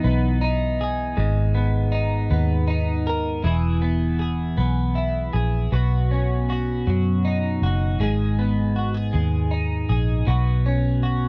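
A bright, clean, double-tracked twelve-string electric guitar sits up front over a dark, round, punchy muted bass in this swaying, heartfelt six-eight pop ballad at 53 BPM, moving through chords such as Emaj7, G#madd9 and Badd9 with light reverb in a dry, close 1970s-style studio sound.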